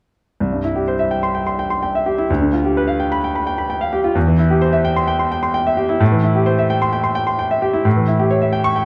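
A clear, natural grand piano enters alone at 0.4 s and carries this short cut from a longer classical virtuoso study, its sparkling, heroic character spanning C2 to C#6 in a freely pushed and pulled 4/4. The harmony moves from C through G7/D, C/E and Am7 to A7 near 7.9 s, with the instrument tuned to A4 = 435 Hz. The piano sits up front within a dark, warm production touched by light reverb, and the passage stops at 8.8 s.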